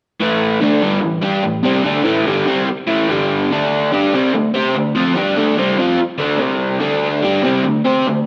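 A crunchy overdriven electric guitar carries this short rock fragment as the solo part, playing from 0.2 to 8.2 seconds across a range from G2 to C5. The tone is warm and gritty, picked and double-tracked, and it sits up front in the mix with a menacing, raw character. At 145 BPM in a straight 4/4 feel, the part moves through A minor, opening on Am before shifting through G5, D5, C5 and back to D5 power chords. A wet large-studio reverb with a 1.4-second tail surrounds the guitar, giving the sense of a band playing live in one room. Cut from a longer piece, it feels like a brief, ominous riff caught mid-performance.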